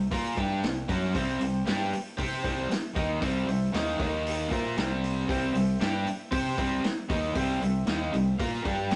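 Classic rock with a swaggering, sunny strut in straight four, this short cut leads with two up-front picked electric guitar riffs, one a bright cranked stack and the other a crunchy overdriven tone, over a dark, round fuzz bass fingered through overdrive. A vintage acoustic kit with a punchy kick, a medium-tuned snare and hi-hat sits mid-forward with a rolled-off top, while a clear, woody upright piano comps in the background and adds fills at 0.1 s and 8.4 s. A moderate stone room reverb gives the whole thing the rough, dulled sound of a rehearsal-room recording.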